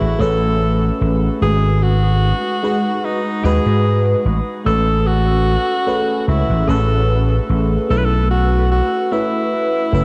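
A slow 74 BPM groove in 4/4 with a light swing on the sixteenths sets up this nostalgic, dreamy vaporwave piece in A lydian, cut from a longer work, where a round, punchy vintage slap bass sits up front and an FM electric piano with a soft pad layer shimmers through phaser, lush chorus and delay over chords moving from Amaj9 through G#m7 to B9sus4. A bright, forceful alto saxophone carries the melody with jazz-style vibrato and tape echo. The whole mix is soaked in a cathedral reverb with a 6.0-second tail and the hazy grain of cassette tape.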